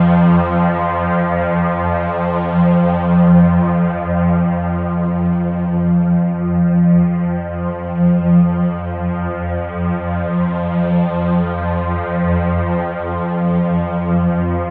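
A swarming, detuned drone of sine tones holds the stage alone, sustained in unison between F2 and F3 with a slow attack, long release and a granular, evolving texture, sitting up front through phaser, delay and its own reverb. This ominous, desolate ambient passage floats in free time with a slightly flat tuning of A4 = 438 Hz, opening with a short section before shifting at 4.7 seconds into a longer one that runs to 14.7 seconds. A huge, wet space with a 7.3-second decay surrounds the tense sound, and the clip is cut from a longer piece.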